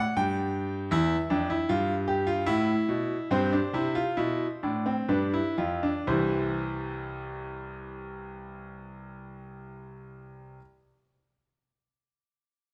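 A clear, natural grand piano sits up front and carries this short excerpt alone, voicing a three-part baroque-style fugue in C major. The mood is lively and joyful, in 3/4 with a straight feel and a tempo ranging from 58 to 81 BPM, easing back over the first 6.1 seconds. The piano spans a broad range from C2 up to G5, moving through G5, Em, A5, C/G and G7 before settling on C at 6.1 seconds, where a second section begins. A wet recital hall reverb with an RT60 of 1.4 s lends the counterpoint a gentle sense of space. Cut from a longer classical piece, the passage runs to 10.6 seconds.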